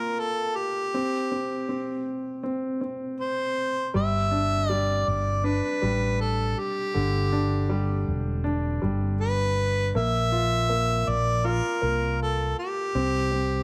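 A heartfelt, tender pop passage at 80 BPM in a straight 4/4 opens with a smooth-topped solo harmonica singing the melody up front, over a clear, natural grand piano accompaniment in its middle register. At 3.9 seconds a dark, round fretless electric bass enters with an amped tone and an ensemble chorus, settling the harmony on G before it returns to B-flat and C power chords. Light reverb and a small room ambience give this cut from a longer piece an intimate feel.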